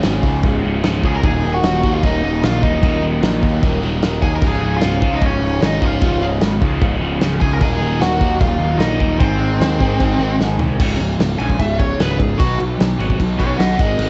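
Upbeat and energetic, this punk rock excerpt charges along at 150 BPM in Db major, with three overdriven guitars (a biting dark one, a crunchy bright one colored by phaser, and a double-tracked hollow-body semi-hollow) churning riffs in the background behind a loose, up-front indie drum kit with a punchy kick and dark cymbals and a growly, fuzz-drenched picked bass. From 1.1 seconds a bright, high-gain lead guitar with distortion and analog delay carries the melody, and after a drum fill it breaks into a solo at 10.8 seconds as the chords move from Db to Cb. The whole mix has a light reverb and the dulled, lo-fi haze of cassette tape.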